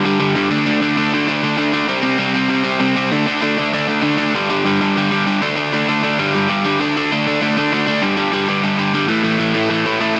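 Punk at 196 BPM in a straight 4/4, this upbeat, energetic excerpt features a lone overdriven electric guitar, bright, picked and double-tracked, sitting up front as it drives through power chords on G, D, C and A. The chords move through G5, D5 and C5 before a change of section at 6.8 seconds brings a closing passage of D5 and G5 that ends on A5. A moderate studio reverb surrounds the guitar, and the master is dense and heavily limited.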